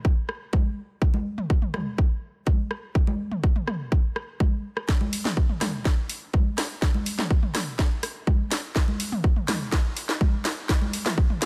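A digital ambience surrounds this expansive, driving house excerpt, where a punchy, up-front electronic kick anchors the straight 4/4 from the start, an overdriven deep house kit of congas, rim clicks and toms pumps against it from 0.3 seconds, and a second house kit with a cracking snare and pumping hi-hats joins at 4.9 seconds for a build-up and drum fill that runs to the cut.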